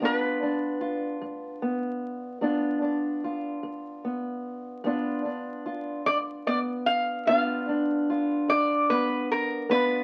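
Crackle from a very old 78 rpm record hangs over this brief cut, with light reverb giving the two guitars a little air. It is acoustic country blues in G mixolydian, laid-back yet rollicking, moving at a slow 50 BPM in a straight 12/8 and opening on a G7 chord. A lap resonator guitar carries the melody up front, its metallic, nasal slide tone struck with fingerpicks and sitting high between Bb4 and F5. Beneath it, an old ladder-braced acoustic guitar is fingerpicked in the lower register from G2 to F4, sounding dark, woody and boxy on old strings. Both instruments play together for the full 10.0 seconds of this fragment of a longer piece.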